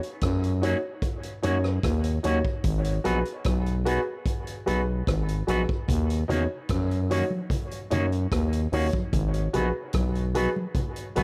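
A vintage drum kit opens this spacious, deep dub reggae excerpt with hi-hat, rim click and a punchy kick, rolled-off up top. A growling, thick FM bass sits up front from 0.2 s, and the twangy, scooped guitar through an envelope filter and the dark baby grand piano stabs, with audible action noise, both trail dub echo over D#m7 and G#m7. Once the opening break ends at 5.9 s, soft-handed congas with a thin-skinned, band-limited tone join in the background, all within light reverb and studio ambience.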